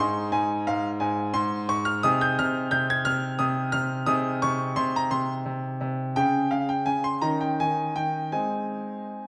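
A bright grand piano plays alone, sitting up front with a brilliant, open tone and long sustain that lets each note ring. The music is a classical-period sonatina in 6/8, and its mood is cheerful and playful. The pianist shapes the phrases with a free rubato, moving across a span from Ab2 up to Ab6. A high Ab5 opens the passage at 0.0 seconds, an Ab/C chord arrives around 2.0 seconds, and the phrase comes to rest on Ab near 8.3 seconds. A moderate recital hall reverb surrounds the instrument, and this brief fragment is cut from a longer piece.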